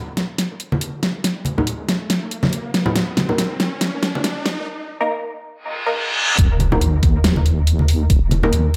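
Heavy and brooding, this deep dubstep excerpt at 140 BPM in a swung half-time feel builds for 6.4 seconds with a tape-toned dubstep kit of huge snare and bright hats, ringing congas in dub echo, a muted, phased chord stab under a filter sweep, and a riser and reverse cymbal, before the drop at 6.4 seconds brings in a knocking electronic kick and an up-front, dark, detuned wobble bass with chorus.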